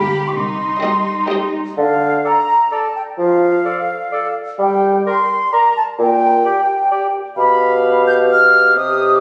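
Captured on a phone in a reverberant room, this short cut from a sneaky, mischievous film cue in D minor at 129 BPM in 3/4 opens with rich and warm bowed violin, viola, cello and double bass sections sitting behind an airy, expressive flute group up front; the strings fall away by 1.8 s as a mellow, distant bassoon takes over the accompaniment, and a clear clarinet and dark cor anglais join the flutes at 2.2 s, carrying on to 9.2 s over chords moving from Dm toward G7/B.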